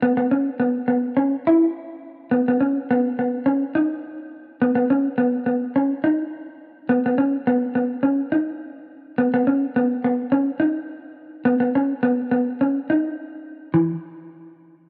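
A mellow, dark, clean electric guitar, fingered, up front and tinted by cassette tape, plays alone until 13.9 seconds in this joyful, carefree highlife piece at 105 BPM in 4/4 with a light 16th-note swing, moving into new sections at 4.6 and 13.7 seconds within a light digital reverb on a home cassette recording.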